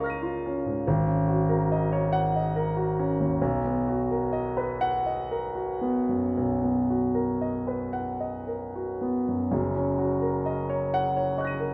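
A concert grand piano, up front with deep bass and an open tone, plays alone through this serene, luminous fragment of impressionist classical music, moving in a slow, rubato 6/8 at about 36-49 BPM in dotted quarters and tuned to A4 = 442 Hz, spanning F#1 to Eb7 over lush chords from Db69 through Ab9sus4 and Bmaj7 to F#6 at 9.5 seconds, bathed in a wet recital-hall reverb.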